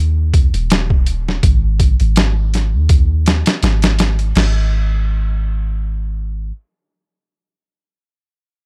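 Brooding and melancholic, this dry trip hop excerpt moves at 82 BPM in 4/4 with a light 16th-note swing, built on a deep, round, sine-like 808-style bass with a fast attack and decaying tail that sits dark and up front from the start until 6.5 seconds, while a compressed, gritty, pitched-down boom bap sampler-style kit with a thumpy kick, medium-tuned snare, hi-hat and crash cymbal, tape-warm and close in a studio ambience, enters at 0.3 seconds and drops away at 4.6 seconds.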